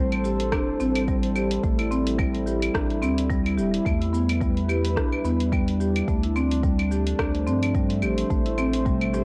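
A warbling, detuned tape-like pad with chorus, reverb and sidechain pumping opens this mystical, organic downtempo excerpt in A minor at 108 BPM, joined at once by woody rosewood marimba arpeggios through cassette tape and analog delay, and a round, dark analog bass that pumps beneath them. Overdriven deep house drums of claves, hi-hat, rim click and shaker swing gently on the 16ths, with a deep electronic kick arriving at 0.5 s, while a soft-handed clay darbuka slips into the background at 8.6 s. The chords drift from Am7 through Em7 and Dm7 back to Am7 inside a moderate spring reverb, with the nostalgic lo-fi character of a home cassette recording.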